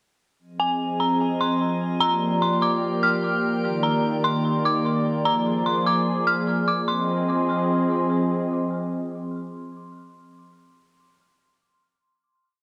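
A half-time feel in 4/4 gives this short, spacious cloud-rap hip hop piece a slow, floating pulse and a melancholic mood. A vintage analog pad, sawtooth-edged and gently warbling with subtle chorus, sits up front from 0.4 seconds, holding soft-attack chords that move through Fm7, Gm7, Ebmaj7 and Bb7. Over it, an eerie, detuned FM synth bell carries a sparse looping melody, repeated like a sampled loop, its inharmonic tones decaying and colored by chorus and analog delay. Deep in the background, a calm, glassy texture of drifting sine overtones fades in with a slow attack and vanishes by 5.2 seconds, washed in its own reverb. After the breakdown, the piece settles onto a final Fm7 at 6.9 seconds, heard through a moderate spring reverb in an echo-heavy mix.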